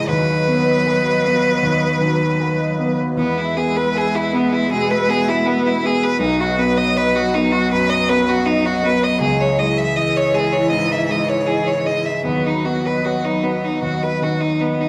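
A wet, roomy studio sound flecked with vinyl crackle frames this hopeful, intimate neoclassical passage for piano and strings, cut from a longer piece and moving at 78 BPM in a rubato 4/4 in B major. Up front, a bright, focused solo violin carries the melody with vibrato over a concert grand piano whose accompaniment has audible action noise, deep bass, a slightly boxy tone and long sustain, while a close, clear cello plays a second line in the background. A swirling, detuned sawtooth analog pad, treated with phaser and chorus, sustains slow-attack chords behind them, as the harmony moves from B/D# through E, B and C#madd9 before returning to B/D# at 12.2 s.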